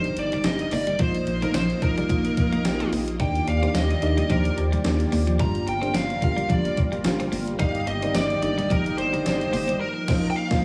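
This glossy, nostalgic slice of 1980s-style pop opens with nearly the full band at once: a distorted, high-gain lead guitar carries the melody with digital delay, over a mellow FM electric piano whose soft, warbling tone carries a touch of chorus. Beneath them sits a rubbery square-wave bass with a hollow, bouncy pluck, while a clean 12-bit digital drum machine plays a lightly swung pattern of thumpy kick, fat snare, hi-hat, tambourine and crash cymbal, treated with gated reverb. A vintage string machine holds sustained viola chords in the background, and analog synth brass adds bold, detuned sawtooth stabs with chorus and digital delay. A picked electric guitar riff, subtly chorused and echoing with delay, enters at 0.1 seconds and sits behind the other parts until 9.8 seconds. The harmony moves through major-seventh, suspended and minor-seventh chords, and the excerpt ends on a band accent from 9.8 seconds, set in a light small-room ambience.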